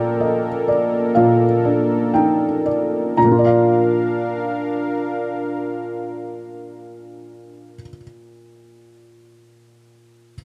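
The rhythm is a loose, rubato 4/4 at around 57-65 BPM, easing into a slowdown over the first 3.2 seconds before settling on a Bb major chord. This short fragment of neoclassical piano and strings in Bb major feels hopeful and intimate. A felt-muted upright piano carries the accompaniment from Bb2 to Bb5, its tone soft, mellow and close, with a thin felt quality. Alongside it, a warm analog pad holds sustained chords from Bb3 to F5, its smooth, detuned sawtooth sound blooming with a slow attack and chorus. The harmony moves from Gmadd9/Bb to Bb, and the pad drops out at 7.7 seconds, leaving the piano alone until 10.4 seconds. The dry, up-front sound of a 1970s-style studio, with little reverb, keeps the performance warm and close.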